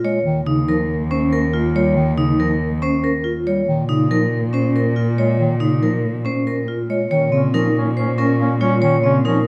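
A straight 4/4 pulse at 140 BPM drives this urgent yet meditative stretch of minimalist classical pattern music in Bb dorian, where a hard-mallet vibraphone carries a ringing, boxy melody over a second, dry medium-hard-mallet vibraphone spinning full, metallic arpeggios with fast motor vibrato, a smooth-topped, mellow bass clarinet accompaniment and an up-front, warm bowed cello bass with expressive vibrato and portamento, before a vintage-toned soprano saxophone with light vibrato enters at 7.1 s on a second line as the harmony moves from Eb7sus2 through Bbm to Bbmadd9, captured by detailed microphones in a moderate recital-hall reverb.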